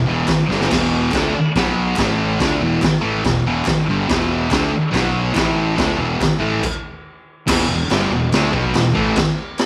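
A straight, driving four-beat pulse carries this raw, swaggering garage rock fragment, cut from a longer piece, with a drum fill arriving at 0.5 seconds. Up front, a thick, double-tracked fuzz guitar picks a bright, distorted riff that cycles through E5, B5 and A5 power chords, while a fuzz-laden electric bass, overdriven and warm, sits in the background beneath it. The garage drum kit is gritty and saturated, with a high-tuned snare, boomy kick, crash cymbal and a rolled-off top, sounding mid-forward in a small room. A group handclap adds a crisp, very quiet layer of human percussion. Everything halts in a stop at 6.6 seconds, then the band crashes back in on E5 at 7.5 seconds, all bathed in a moderate echo-chamber reverb with small-room ambience.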